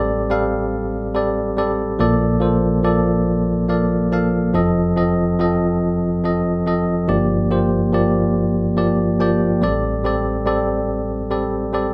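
Intimate and tender, this short folk passage is cut from a longer piece and rests entirely on a solo tine electric piano in a 6/8 metre with a straight feel. The piano's tone is bell-like, bright and clean, placed direct and up front in the sound, and it reaches from a deep F1 up to A5. Its harmony moves from D7sus4/A through Bbmaj7, F7 and Gm7 before returning to D7sus4/A at 9.6 seconds, a gentle loop of seventh chords. A light reverb lends the instrument a soft sense of space, keeping the close, private mood of the playing.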